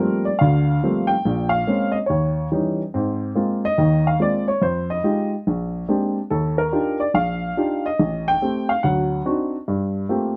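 Close, detailed microphones and a light reverb capture a solo upright piano with a woody, natural tone sitting up front, spanning A1 to G5 in this short smoky, moody jazz fragment cut from a longer piece. The 4/4 swing carries a rich chord progression that moves from Gm11 through Bbm9, Eb7b9 and Ab69, then on to Fm9, Bb13 and Ebmaj9 before Am7b5 and D7b9 bring it home to Gm11 at 9.7 seconds.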